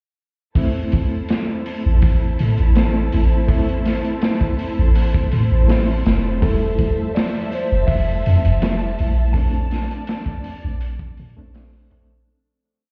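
Trip hop at 82 BPM in A phrygian, hypnotic and cinematic, where a gritty, saturated looped breakbeat with edits and a deep, round 808-style bass riff sit up front beneath reedy, overdriven electric piano chords with tremolo and tape echo and a lush, distant bowed string pad, moving from Am through Fmaj7 to Bbmaj7 as a slightly broken-up slide guitar enters at 6.4 seconds with a free, tape-echoed melody, the mix heard muffled as if through a wall in a stone room before fading out from 8.4 seconds.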